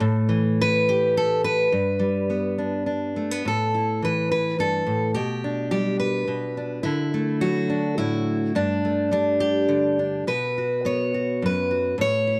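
A dark, lightly reverberant production frames this gentle, nostalgic folk excerpt in 3/4 at 106 BPM in A mixolydian, where a solo fingerpicked steel-string acoustic guitar, up front with an auditorium-sized body and audible finger squeak, moves from Asus2 and G through A5, G/B, D and Gsus2 to close on B5 at 12.4 seconds.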